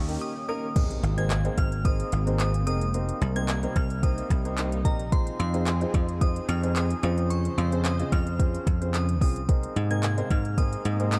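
A straight 4/4 groove at 110 BPM drives this summery, euphoric dance-pop excerpt in Ab major. The smooth R&B drum kit sits up front with a soft kick, smooth hi-hat, handclaps and crash cymbal, alongside a dry, punchy thumbed slap bass and a concert grand piano with deep low end, both pumping with sidechain. A very quiet riser and impact open the first 2.9 seconds, while a glassy FM synth bell with chorus and delay carries the melody over a lush, detuned unison pad in the background, all in a dark production with little reverb, moving through chords from Abadd9 to Cm7, Fm7 and Dbmaj7.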